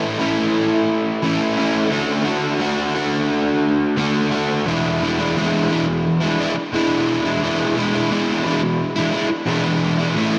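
A huge, dreamy wash of ambient reverb soaks this brief, wistful rock fragment at 87 BPM in E mixolydian, tuned slightly below standard pitch. A single overdriven semi-hollow electric guitar plays alone and up front, picked and double-tracked, its hollow-body tone thickened by subtle chorus and analog delay as it moves from A to D and then settles on E7 at 4.7 seconds. It is cut from a longer piece and breaks off at 10.4 seconds.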